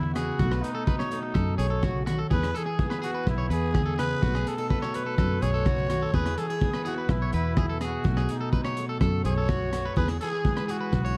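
A raspy, growling trumpet opens this short cut from a highlife guitar band at 125 BPM in a straight 4/4, sounding together with a bright, full-bodied steel-string acoustic guitar, a twangy electric guitar on the edge of break-up and a round, foam-muted fingered bass. The crunchy breakbeat kit comes in at 0.2 s with a punchy kick, hi-hat and rim click, its saturated sound dark and rolled-off at the top. The distant, roomy trumpet carries the melody with a light vibrato and a tape echo, while the slightly broken-up electric guitar plays arpeggios through its own tape echo and the picked acoustic guitar fills in the accompaniment. The harmony swings between B7 and E every couple of seconds, giving the piece a carefree mood. Light reverb and a layer of vinyl crackle lend the whole a warm patina.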